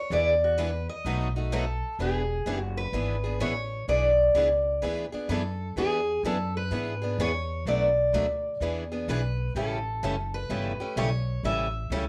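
Charming and lively, this excerpt of acoustic string swing in E mixolydian moves at 127 BPM with a swung feel, led by a bright, up-front picked steel-string guitar that carries the melody and takes a solo over the first 2 seconds, while two quieter picked steel-string guitars, one boxy parlour and one with finger squeak, accompany through E7, B7, Bm7 and A7 changes, all three guitars coloured by cassette tape, above a woody, thumpy pizzicato upright bass on gut strings, the whole home cassette recording set in a moderate studio reverb.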